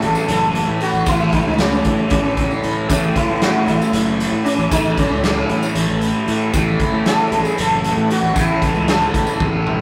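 A double-tracked fuzz guitar sits up front, playing a distorted, phaser-coloured riff. Above it, a buzzing, shimmering sitar carries the melody, its sympathetic strings ringing. This kaleidoscopic, hypnotic psychedelic rock piece moves in 7/8 with a straight feel over a single Aadd9 chord, while an overdriven fingered bass adds a growly, punchy low end. A raw garage drum kit plays hi-hat, kick, snare and toms in a pumping stone room; it sounds gritty, with a rolled-off top, and a drum fill arrives at 9.4 seconds. Very quiet in the mix, a percussive tonewheel organ holds sustained chords through a fast rotary speaker with audible key click, and a close, dry tambourine jingles in the background, all captured in a rough rehearsal-room recording with tube saturation and light reverb, cut from a longer piece.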